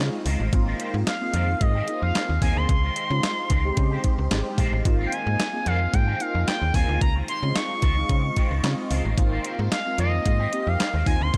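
This feel-good, danceable slice of early-eighties boogie funk opens with a crisp 8-bit digital drum machine sitting up front, its thumpy kick, medium-tuned snare, hi-hat and handclaps carrying a tape-tinged, sampler-style character. A snappy, slap-like FM bass with a metallic, fast-decaying attack sits just as forward, while a round, detuned synth brass with chorus, vibrato and a filter sweep plays dark accompaniment. A clean, picked electric guitar run through an envelope filter adds a riff, and a swirling, vintage string machine with phaser and ensemble chorus holds sustained chords in the background. At 1.1 seconds a smooth, expressive sawtooth synth lead enters up high with a soft attack, vibrato and slapback echo, bright against the darker parts beneath it. The harmony alternates between Dbmaj9 and Ab6 under light reverb in this short excerpt, cut from a longer piece.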